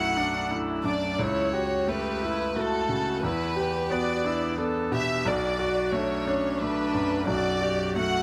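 A chamber violin section carries a fragile, longing melody over bright grand piano accompaniment and a dark solo viola from the opening moment, in a rubato neoclassical passage in B minor at 88 BPM in 3/4. The violins sound close and smooth with light vibrato and a sul tasto softness, the viola adds an airy, soft-attacked bowed line beneath, and the up-front piano rings with long sustain and audible action noise. Cut from a longer piece, the harmony moves from Bm7 through A7/C# and Em7 before returning to Bm7 at 5.3 seconds, all captured by intimate, detailed microphones in light reverb.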